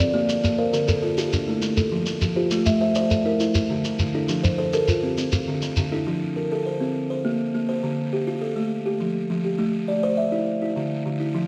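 Heard through a moderate scoring-stage reverb, this hypnotic, rippling cut from a longer piece is a southern African traditional mbira-style interlocking cycle in 12/8. Two buzzing kalimbas play soft, fingertip-plucked arpeggios: one is woody and ringing with an airy, up-front presence, while the other has a hollow-box body and a short, dark, smooth tone, and a grainy, up-front shekere adds percussion. The shekere stops at 5.9 seconds and the second kalimba at 6.4 seconds, leaving the first kalimba alone until 11.5 seconds.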